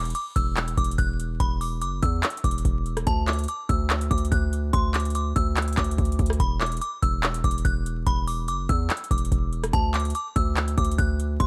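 Menacing and dark, this 11.5-second trap excerpt moves at 144 BPM with a half-time feel, its booming analog drum machine laying deep kicks, metallic hi-hats, handclaps and rim clicks up front with a tape-warm tone. A distorted 808-style bass sits just as close, heavy and saturated with a noise layer and fast, decaying notes, while a delicate FM tine bell tinkles a high melody through chorus and digital delay. The chords alternate between a rootless Bmadd11/E and Dsus2 in a dry mix dusted with vinyl crackle.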